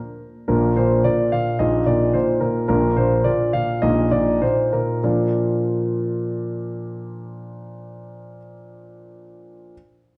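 In a straight 2/4 at 95-110 BPM, this graceful, elegant classical-period piano sonatina in Bb major unfolds as a short section cut from a longer piece. A concert grand piano plays solo from 0.5 to 9.7 seconds, ranging from Bb1 to F5, with a deep bass, an open tone, long sustain and an up-front presence. The harmony moves between Bb and Eb5/Bb, returning to Bb at 5.0 seconds, where a second section begins after the opening one. The tempo slows between 2.1 and 5.0 seconds. A wet recital hall reverb and a dark, warm production give the piano a rounded, resonant setting.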